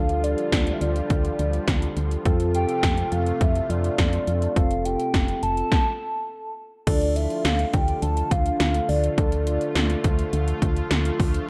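Synth-pop at 104 BPM in D minor, driving and nocturnal, this dark, lightly reverberant excerpt moves between Dm and F as a hollow, woody clarinet-like lead with vibrato and chorus carries the melody until 10.0 seconds over muted felt-like keys with a soft, intimate tone, a lush, detuned unison pad treated with chorus and phaser, a round, punchy FM bass, and up-front overdriven 80s electronic drums with a gated snare and metallic hats, the groove halting for a stop from 5.7 to 6.9 seconds before settling back on Dm.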